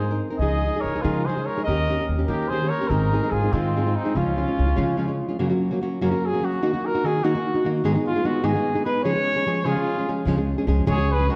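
A loose, rubato 6/8 sway underpins this festive, romantic mariachi fragment, cut from a longer piece, where a mellow, lightly vibrato-tinged trumpet carries the melody from a distant, roomy spot while a dark, fingerpicked nylon-string guitar and a woody, growly pizzicato upright bass sit up front. A bright second trumpet with vibrato adds a second line in classical style until 5.2 seconds, when it and the bass fall away just before the harmony moves to a new key, leaving lead trumpet and guitar together. The second trumpet returns at 9.7 seconds and the bass at 10.3 seconds, all set in a moderate concert-hall reverb with a dark, warm production.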